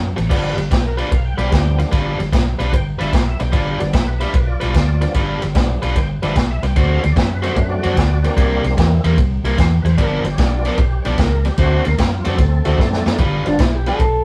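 A rough rehearsal-room recording with light reverb catches a gritty, soulful electric blues shuffle at 149 BPM in G mixolydian, where a dark, round, foam-muted fingered bass and a roomy big-band drum kit with a punchy kick swing beneath a biting, overdriven picked guitar riff and a full tonewheel organ turning through a slow rotary speaker with chorus vibrato, moving over G7, D7 and C7 until a drum fill at 12.8 seconds, before a slightly broken-up, lo-fi lead guitar through a small old amp enters at 13.5 seconds in this snippet cut from a longer piece.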